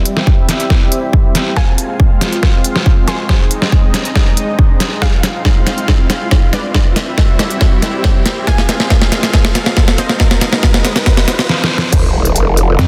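This heavy, chaotic wobble dubstep excerpt opens on a lush supersaw pad of detuned sawtooth chords, roughened by vintage 12-bit sampler grit and sidechain pumping, while a filter sweep runs across it through a long build-up at 139 BPM in a half-time feel. A bright, punchy unison pluck carries the melody in the background, its ring-modulated tone trailing dub echo, over a progression that moves from C through Fm and Ab. Tape-warm, up-front drums drive the build, with a deep snare carrying soft clipping, crisp hats, crash cymbal and a punchy electronic kick, all with drum fills throughout. A background riser climbs from 1.7 seconds, joined by a swell just before the impact at 11.9 seconds. There a growling, saturated bass with formant-filtered wobble lands on an Fm7 chord, followed by a brief burst of mellow, pulsing pluck wobble bass, all inside a dense, heavily limited modern master.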